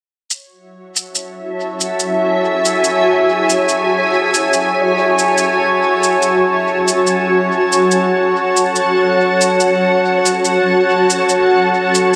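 Hazy and meditative, this ambient dub fragment, cut from a longer piece, rests on a single F#m7 chord, with a produced electronic shaker and a bubbling, resonant sawtooth texture with random filter steps and chorus entering at 0.3 seconds in the background. At 1.4 seconds a cloudy, evolving granular pad arrives up front, its detuned unison sine tones slowly swelling into full-bodied sustained chords coloured by vintage 12-bit sampler grit. The echo-heavy mix sits in a moderate echo chamber reverb with a 2.1-second decay, blurring the parts into a drifting haze.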